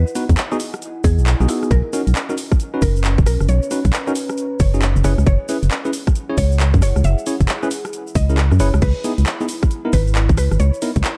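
A skippy, late-night two-step UK garage excerpt at 135 BPM opens with a hollow, organ-like FM bass up front, a deep, moody ambient pad with chorus, built-in reverb and sidechain pumping in the background, and a woody mallet-like synth pluck carrying the melody through chorus, cassette tape and dub echo, while a tight, layered electronic kick, a garage kit of metallic hats, cabasa, handclaps, rim click and crash, and bright bell-like tine electric piano stabs join within the first 0.3 seconds over Emaj9, Bmaj9, F#9sus4 and C#m9 chords, with a drum fill at 8.4 seconds in a dark, lightly reverberant production.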